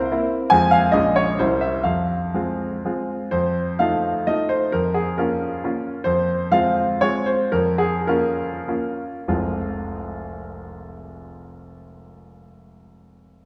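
Nostalgic and capricious, this brief excerpt of a romantic classical triple-time dance in F minor sets a bright, vintage-toned grand piano alone and up front in a wet concert hall, its dotted rhythms pushed and pulled with rubato at 91-152 BPM, slowing between 5.4 and 9.3 seconds before settling on F minor at 9.3 seconds.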